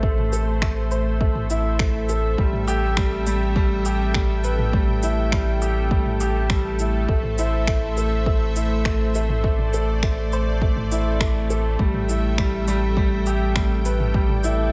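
A steady, straight 4/4 groove from an overdriven electronic kick and a deep house kit of finger snaps, shaker and toms, both in studio reverb, drives this hypnotic, intimate piano-and-strings electronica, cut from a longer piece. A woody upright piano riff with delay sits up front beside a round sine sub bass with sidechain pumping, while a lush, detuned unison pad with chorus holds slow-attack chords behind them. The harmony sways between Am and Em/A inside a digital ambience.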